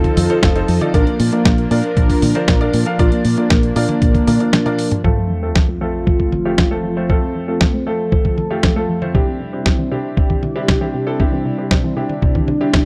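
A dark, brassy synth melody with chorus, tape echo and vibrato leads this romantic, playful italo disco excerpt at 117 BPM in F major, over a lush, warbling pad, clear but worn piano stabs roughened by 12-bit sampler grit, a gritty, compressed sampler-style kit of hi-hat, snare and toms, and an up-front thumpy electronic kick. A foam-muted fingered bass plays until 4.4 s, and after a drum fill and brief break a background sub drop and a round, detuned analog pluck arpeggio under a filter sweep enter at 5.0 s, all in a dry, close 1970s-style studio sound.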